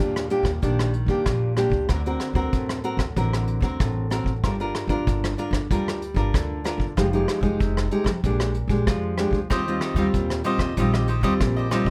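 A fingerpicked nylon-string guitar sits up front in this playful, lively samba and choro fragment, its classical touch carrying the accompaniment through a straight 4/4 feel. Beneath it, a pizzicato upright bass with gut strings gives a woody, thumpy low end, while a vintage brush drum kit adds hi-hat, a tight kick and rim clicks with a dark, smooth, rolled-off character of its own. The harmony moves from Ebmaj7 through D7b13, Gm7 and Fm9 to Bb6 before settling on Eb69. At 9.5 seconds a warm, crisp, picked cavaquinho joins in on top for the close of the passage. Light reverb gives the ensemble an intimate studio-room glow, and the clip is cut from a longer piece.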